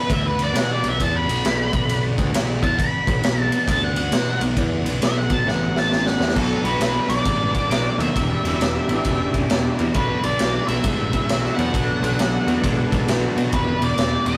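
Blues rock in the power-trio mold with a southern rock lean, this gritty, brooding excerpt moves at 134 BPM in 4/4 with a swung eighth-note feel, centered in B minor and tuned slightly flat of standard pitch. A dark, fuzzed-out octave-fuzz lead guitar carries the melody throughout, taking a solo over the opening 6.4 seconds, while a very quiet overdriven tonewheel organ holds thick sustained chords beneath it, colored by chorus vibrato and a slow rotary speaker. A growly, round fuzz bass anchors the low end, and an up-front garage drum kit with a high-tuned snare, punchy kick, crash and ride drives the groove, capping the opening with a drum fill at 5.5 seconds. At 6.4 seconds a crunchy, double-tracked overdriven guitar enters in the background with a riff as the harmony shifts from B minor to a Bm7 and Em7 alternation. The rough rehearsal-room sound carries a moderate stone-room reverb and saturated character, with the drums pumping against the room and a rolled-off top.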